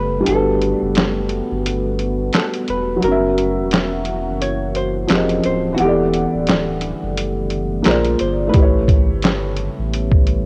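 A lightly swung 87 BPM groove in 4/4 arrives at 0.3 s on a muffled, pitched-down sampler-style kit, with a thumpy kick, handclaps, hi-hat and snare sitting up front, setting a nostalgic, melancholic lo-fi hip hop mood. A soft, felt-muted upright piano carries the accompaniment through jazzy chords such as Gmaj9, Fm11 and A9, over a round sine sub bass with transformer saturation and a moody, detuned pad that sits in the background with chorus and reverb. A dark, clean hollow-body electric guitar plays the melody through cassette tape and tape echo until it drops out at 8.5 s, all within a homespun cassette recording with light reverb, cut from a longer piece.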